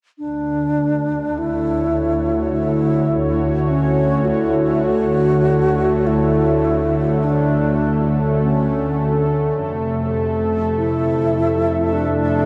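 From 0.2 s, a wooden-headed alto flute carries an airy, vibrato-laced melody up front over a smooth, detuned sawtooth pad with chorus and a dark, veiled section of muted, bowed chamber double basses touched by tube saturation, the three sharing a huge reverb and worn, warbling cassette-tape pitch drift in this serene, warm ambient fragment of a longer piece as the harmony moves from Dmaj7 to Fmaj7 at 9.6 s.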